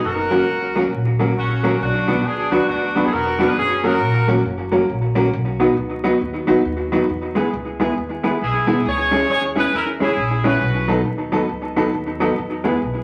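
A bouncy, joyful ska fragment at 136 BPM with a swung eighth-note feel opens at 0.0 seconds on a warm horn section melody with light vibrato over plucked, woody upright bass, soon joined by a clean, dark hollow-body jazz guitar with tape echo and mellow upright piano stabs; the horns drop out at 4.3 seconds and return at 8.4 seconds as the chords move from F# through Bm, B, E and C#m to B7 before settling on E, all under a roomy reverb and a layer of vinyl crackle.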